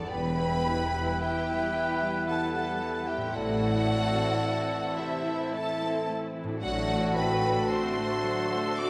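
Lush, vibrato-laden violins carry the tender melody in this serene, slow romantic orchestral excerpt at 56 BPM in a rubato 3/4, over a second violin line, an airy, hollow flute line, ringing harp arpeggios, smooth viola accompaniment, sustained chords from bright trombones and clear French horns, distant trumpet stabs, and a rich cello and double bass foundation that drops out at 7.5 s, all moving through Em, Am and D7/A in a reverberant concert hall.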